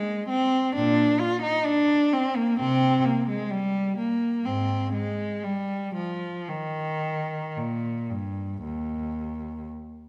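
Classical, baroque-style suite movement for unaccompanied cello in Eb major, introspective and flowing at a rubato 54-66 BPM in 4/4, with a single bowed cello sitting up front, rich and expressive with vibrato and portamento, ranging from Eb2 to F4 and playing alone until 9.7 seconds in a wet recital hall reverb, in this brief excerpt cut from a longer piece.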